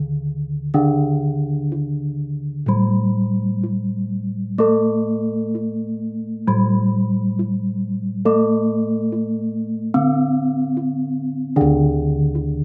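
Bronze metallophone and bossed gongs sound together from the first moment in this serene, ceremonial Javanese gamelan excerpt in D slendro, moving at a stately 62-76 BPM in straight 4/4, the metallophone's ringing, wooden-mallet tone shimmering with paired-tuning beats over the round, up-front bass of the gongs, all touched by light reverb in an open outdoor sound before a new section arrives at 11.6 seconds.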